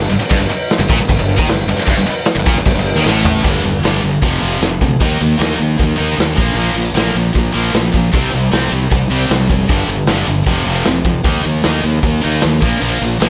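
Opening at once on a menacing wall of picked, distorted electric guitars (a double-tracked heavy high-gain riff that drops out at 3.4 seconds, plus a scooped high-gain part and a tight one sitting bright in the background) over a growly, punchy fuzz-fingered bass up front, this aggressive hard rock fragment brings in a raw garage drum kit with a boomy kick, dark cymbals and a gritty, saturated small-room pump, whose fill at 3.0 seconds launches a driving power-chord progression that carries on until the cut.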